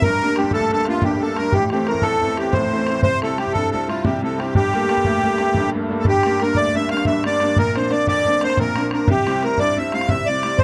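From the first moment, a reedy accordion carries the melody up front, its light tremolo tuning giving the tone a sweet shimmer, while a bright upright piano and a damped bodhran play alongside it. This is a Celtic slip jig in 9/8 at 119 BPM, set in G dorian with a driving, dark and lively mood. The piano supplies a woody, polished accompaniment with long sustain, reaching down into the deep bass beneath the accordion's close, dry line. The bodhran sits lower in the mix, tight and acoustic with a live-room sound. The harmony moves from Gm through Am and C, and the second half, from 6.1 seconds, shifts through Gm, Bbadd9 and C. Light reverb surrounds this 10.6-second passage cut from a longer piece.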